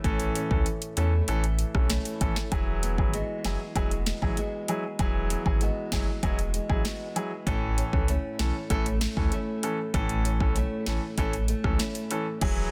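A straight 4/4 dancehall groove from an electronic afro-pop drum kit, with a deep kick, sharp snare and metallic hats up front, drives this sunny, bouncy excerpt, as a thick, fast-attack saturated sub bass, a polished, present baby grand piano and a fingerpicked flamenco guitar with fresh strings, finger squeak and tape echo move from A to Eadd9 at 2.5 seconds and back to A at 7.5 seconds in a dry, dense, heavily limited mix.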